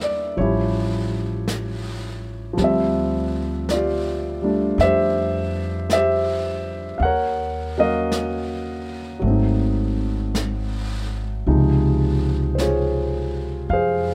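Jazz ballad with an intimate, tender mood and a gentle swing, cut from a longer piece, where a warm, up-front concert grand piano with deep bass plays rich chords over a woody pizzicato upright bass while a soft brush kit of snare and hi-hat sits low in a dry, natural small-room sound.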